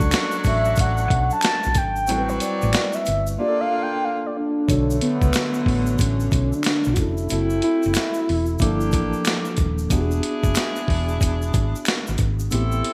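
A mellow tine electric piano, delayed jazz-style saxophone section stabs, a dark, round hollow-body bass, a gritty boom bap drum kit with a thumpy kick, a high-tuned snare and gated reverb, and a tube shaker with finger snaps open this smooth, late-night neo-soul R&B excerpt with a swung sixteenth feel, before a horn-like, warbling synth lead with chorus carries the melody from 0.5 to 9.5 seconds, pausing between 3.4 and 4.7 seconds, in a bright 1980s-style digital production with plate reverb.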